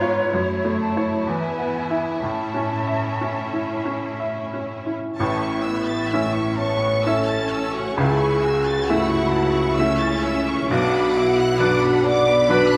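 Passionate and lush, this rubato romantic excerpt for piano and orchestra in A major moves in a slow 3/4 at 60-68 BPM, with a clear, up-front baby grand carrying the melody alongside vibrato-rich violins, while a pure flute group adds a second line until 4.1 s, focused violas and rich cellos fill in beneath, and at 5.2 s mellow French horns bring sustained chords over tuba and softly bowed double basses, all set in a wet recital hall.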